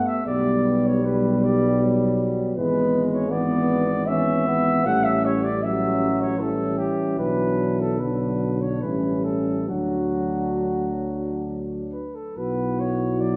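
In a slow, rubato 3/4 that drifts between 65 and 82 BPM, this hymn-like classical excerpt for brass band unfolds in D major with a serene mood. A flugelhorn carries the melody up front, its tone distant and roomy, while a French horn section sings a second line from the background. At 0.3 seconds the euphonium joins with a light vibrato, adding accompaniment alongside a warm trombone, and the tuba enters to hold a mellow bass line near the front. The harmony moves through G/B, E7/G#, A7 and Bm before settling on D, then lands on a bare B5 at 12.4 seconds as the passage breaks off. A generous recital hall reverb places the ensemble further back in the room, lending the whole a gentle, spacious glow.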